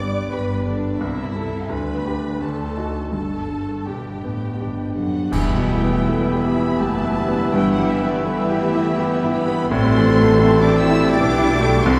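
Up front, an intimate baby grand piano with audible action noise and long sustain carries the melody of this lush, lyrical romantic movement for piano and orchestra, moving in a rubato 3/4 over expressive bowed strings with vibrato: a distant violin section sings high above, a second violin section adds a line in the background, a very quiet viola section accompanies with portamento, and dark cellos and smooth-topped double basses hold the bass. A dry cymbal swell, clash cymbals and concert bass drum sound from 1.0 to 6.8 seconds, and at 5.3 seconds an ensemble accent opens a new section in which an airy flute section, a close-miked oboe, a very quiet clarinet and bassoon join, while a mellow French horn section and vintage trombones hold sustained chords, all set in the reverberant space of a concert hall heard from further back.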